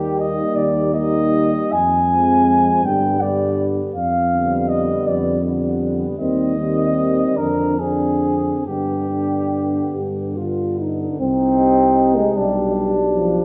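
A mellow flugelhorn carries the melody up front with light vibrato, its tone distant and roomy, in this yearning, solemn, hymn-like classical passage for brass band, taken from a longer piece. A French horn section with a smooth top sings the second line, a soft-attack euphonium with vibrato sits in the background, a warm trombone adds accompaniment, and a tuba anchors the bass. The rubato phrasing in 6/8 unfolds through chords such as Fm, G7/F and Dm7b5/F, all bathed in the wet reverb of a recital hall.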